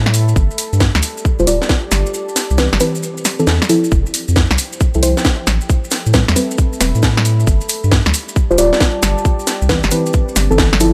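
A tight, tape-warm electronic kick sits up front in this bouncy, soulful two-step UK garage excerpt at 135 BPM, its 16ths swung at 66%, and it drops out between 2.1 and 3.9 seconds before returning. Beneath it a saturated sine sub bass holds thick, sustained low notes, while the garage kit adds a cracking snare and hi-hats in a small room, with grainy, mellow maracas underneath. Deep, full-bodied chord stabs with a nasal filter pluck carry the harmony through Cmaj7, Fmaj7 and Am9, coloured by chorus and tape echo, and a filter sweep runs across them for the whole passage. Behind everything a moody, warbling vintage pad with a sub octave, chorus and its own reverb fades in slowly and pumps with sidechain compression. Light digital ambience wraps the mix, keeping the mood dark.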